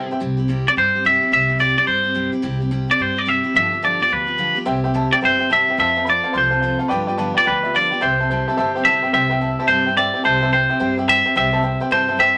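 Swung eighth notes drive this retro, rollicking rock excerpt at 216 BPM in 4/4, moving through C, G7 and F in C major. Up front, a twangy, compressed electric guitar carries the clean, picked melody in a bright upper register from start to finish. Beneath it, a full-bodied dreadnought acoustic guitar picks out the accompaniment, while a thumpy upright bass with gut strings supplies a dark, woody pizzicato foundation. A clear, intimate upright piano adds short-sustained accompaniment with audible action noise, sounding only briefly at the very start before returning at 4.7 seconds. Moderate studio reverb gives the parts a natural sense of room, and a new section begins at 9.1 seconds before the passage cuts off.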